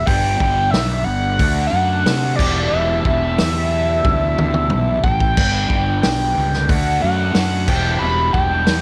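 Dark and trippy, this short cut from a longer psychedelic rock piece moves at 91 BPM in a straight 4/4, centered on E minor and cycling through G, D and E minor. A screaming, saturated synth lead carries the melody up front, its sawtooth and square-wave grit sounding almost guitar-like, colored by chorus, phaser, vibrato and a slapback echo. Beneath it, a growly fuzz bass sits prominently with overdrive, while a double-tracked, picked electric guitar riff adds a shadowy, compressed crunch through its own phaser. A vintage acoustic drum kit with a punchy kick, medium-tuned snare, toms and dusky cymbals comes in at 0.1 seconds and plays a fill from 4.1 to 5.4 seconds. Far in the background, a very quiet chamber string ensemble holds soft, floating bowed chords, and the whole mix is wrapped in noticeable studio ambience.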